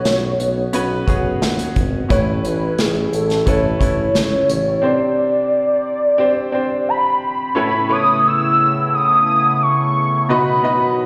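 Anthemic and hopeful, this short cut of piano-driven pop moves at 88 BPM in a straight 4/4, with a velvety, detuned sawtooth synth lead carrying the melody up front over a brilliant, woody upright piano, both touched with slapback echo and the lead also with chorus. A clear, vintage-toned tuba holds the bass and an acoustic drum kit played with bundle sticks, punchy kick and medium-tuned snare, keeps time until about 4.8 seconds, leaving lead and piano to carry on before an evolving, wave-folded pad with resonant filter swell, chorus and phaser enters at 7.8 seconds under the closing chords. The whole performance sounds like a live gig heard through the venue's PA, wrapped in moderate club and recital-hall reverb.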